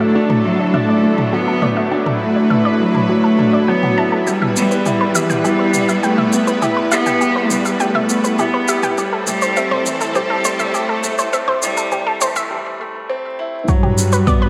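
A solo bowed cello with vibrato and portamento sings an intimate, melancholic melody over a lush, detuned sawtooth pad, nasal analog pluck arpeggios with chorus and delay (both pumping with sidechain), a vintage-toned concert grand piano riff and a dark, very quiet bowed cello section bass in this A dorian piano-and-strings electronica at 102 BPM, where overdriven electronic toms and shaker enter at 0.3 s, a filter-swept build-up leads into a break at 12.5 s, and an up-front, deep overdriven electronic kick lands at 13.7 s, set in a moderate echo-chamber reverb.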